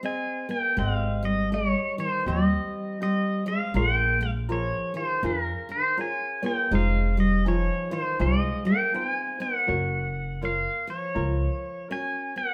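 The pedal steel guitar leads this languid, dreamy Hawaiian piece, its clean, twangy, compressed tone carrying the melody up front with fingerpicks, slides and volume swells. The tempo is an unhurried 81 BPM in 4/4 with a gentle swing on the eighth notes, set in Ab major and tuned slightly below standard pitch. A picked steel-string acoustic guitar plays a second line in its lower register, while a tenor ukulele adds light, thumb-plucked accompaniment with a bright sparkle. The upright bass enters at 0.8 seconds after a short opening break, its woody, pizzicato steel-string sound sitting up front until 11.5 seconds. The band plays live together in a stone room with a moderate reverb, and the chords drift from Abmaj7 through Bbm7 and Fm7 to Gbmaj7 in this short slice of a longer performance.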